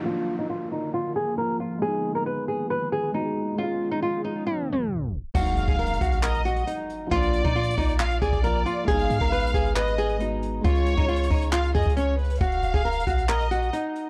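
Set at 136 BPM in 4/4 with a half-time feel, this menacing, brooding hip hop and trap excerpt in Eb minor opens with a fingerpicked flamenco guitar carrying the melody up front, over a soft, felt-muted upright piano and a deep, detuned sawtooth ambient pad thickened by chorus and its own reverb, all three darkened by a low-pass filter sweep. Electronic sound effects sit in the background: a downlifter and a swell, then a tape stop at 4.5 seconds leading to an impact. At 5.3 seconds the pad drops out and the beat arrives. A jazz brush kit with a boomy kick, dark cymbals, hi-hat, handclaps and crash plays alongside a clean, sine-like 808-style bass with a fast attack and decaying tail. A lush, bowed violin section adds a smooth second line with vibrato and tape echo above the guitar. The chords cycle through Bb, Abm, Db and Ebm, landing on Eb5, and the whole piece has a dry, gritty cassette character in a small room.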